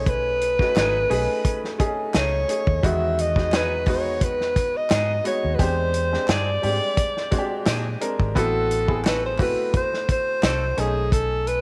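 A subtoned, vibrato-rich alto saxophone with tape echo carries a jazz-style solo melody up front over clear, short-sustained baby grand piano and a dark, round, foam-muted electric bass from the opening moment, joined at 0.1 s by a dry, tight soul drum kit and at 0.8 s by a bright, scooped semi-hollow guitar riff in the background and barely audible hollow handclaps, forming a lush, romantic 1970s-style soul groove at 87 BPM in E major, bathed in echo chamber reverb across this brief fragment of a longer piece.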